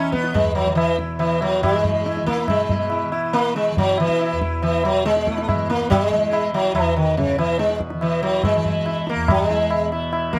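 A plectrum-plucked sitar sits up front, its buzzing tone haloed by the shimmer of sympathetic strings as it carries the melody through a serene, radiant passage of Hindustani classical music. Beneath it, a softly plucked tanpura holds a low, glowing drone in the background throughout. A high-tuned tabla joins at 0.1 s, its strokes close and dry with a short ring, setting a steady, straight pulse in four. The music moves into a new section at 2.5 s that continues to the end. A light reverb gives the acoustic instruments a gentle sense of space, and the recording is a fragment cut from a longer piece.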